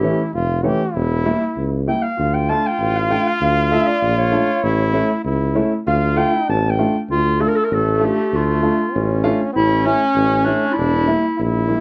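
This klezmer piece, cut from a longer work, moves at 98 BPM in a straight 2/4 in D harmonic minor, tuned to A4 = 435 Hz, with a festive yet bittersweet mood. A mellow, classically styled clarinet carries the melody and takes a solo through the first 7.1 seconds, its tone distant and roomy with a plate reverb. Beside it, a bright, forceful trombone plays a punchy jazz-style second line with vibrato and scooped notes. A dark, woody upright piano with long sustain supplies the accompaniment, while a tuba with light vibrato and a smooth top holds down the bass in a pop style. The harmony circles through A, Edim and Dm, and a new section begins at 7.1 seconds, all set in a moderate small-room ambience.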